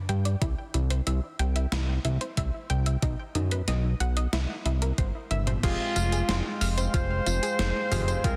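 Synthwave at 92 BPM, this nocturnal, driving excerpt rides a fat, detuned sawtooth bass with sidechain pumping, a round, chorused analog pluck arpeggio under a filter sweep with cassette-tape colour and delay, and an overdriven, gated 80s drum machine with a thumpy electronic kick from 0.4 seconds, until a drum fill at 5.3 seconds opens onto Fmadd9 at 5.6 seconds, where a vibrato-laden alto saxophone solo with digital delay enters over a shimmering pulse-width pad with 12-bit grit and clangy electric grand piano stabs in a dense, heavily limited master.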